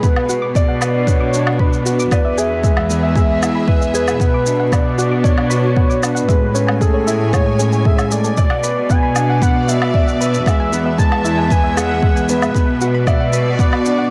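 From the first beat, a felt-muted upright piano with audible action noise and digital delay plays a riff over sustained chords from a lush, distant string section and a sul tasto cello section bass, both pumping with sidechain, as a deep, up-front electronic kick and a shaker and woodblock drive a straight 4/4 at 115 BPM. This cinematic, intimate piano-and-strings electronica excerpt sits in B dorian, circling Bm, E and Amaj7. A velvety synth lead with chorus and vibrato carries the melody, while a round, nasal pluck with chorus, delay and sidechain pumping traces arpeggios in the background, all in light studio reverb.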